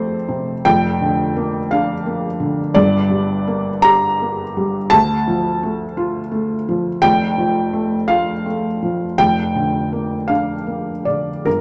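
Neoclassical minimalist piano in a slow, rubato 6/8 at 51-58 BPM, this wistful, melancholic excerpt features a solo felt-muted upright piano, dark and intimate with audible action noise and short sustain, sitting up front in a moderate large-studio reverb as it moves through F, Bb/F, Gm and Dm across a range from F1 to Bb5.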